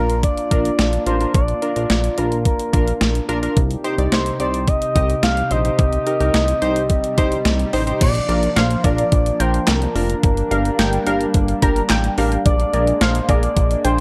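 Cool and melancholic, this synth-pop excerpt moves at 108 BPM in a straight 4/4, built over Bb, Cm and Gm chords that close on Bb7. A smooth, dark sawtooth lead with vibrato, chorus and tape echo carries the melody over round, evolving analog keys, a shimmering pulse-width pad in the background and a glossy, mellow synth bass up front, while a clean 12-bit drum machine pushes a thumpy kick, overdriven snare, handclaps, hi-hat and crash through gated reverb. A faint electronic swell enters at 6.8 seconds, and from 8.3 seconds a warbling, lo-fi, detuned pluck adds a second line with its own chorus and tape echo, all inside a light reverb.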